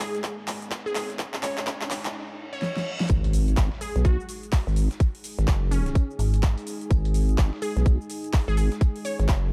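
Swung sixteenths at 126 BPM drive this gritty, aggressive bass house excerpt, where a tight, up-front electronic kick sits under a big-room kit with a huge snare, metallic hats, handclaps and cabasa, while a very quiet, dusty sampler-style kit adds tambourine and a fat snare. A crystalline wavetable pluck carries the melody with dub echo and cassette tape colour over a deep, moody ambient pad that pumps against the kick, as drum fills, a riser and a reverse cymbal in the background build toward the drop at 3.1 seconds. There, an impact lands and a nasal, resonant vowel-sweep wobble bass enters, joined briefly by a metallic FM bass at 6.2 seconds, all within a dark, dry production.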